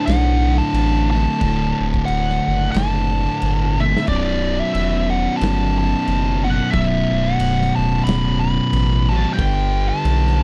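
A dark, picked fuzz lead guitar with wah and tape echo carries the melody in this ominous, hypnotic stoner doom excerpt at 90 BPM in B minor, entering together with a thick, double-tracked fuzz guitar riff that sits up front with a round, deep analog bass carrying tube saturation. A big rock drum kit with a punchy kick and medium-tuned snare stays in the background with a swung eighth-note feel, dropping a fill between 3.7 and 4.1 seconds as the harmony moves from D to B minor before settling on G at 9.4 seconds. The sound is dry and close, like a 1970s studio recording.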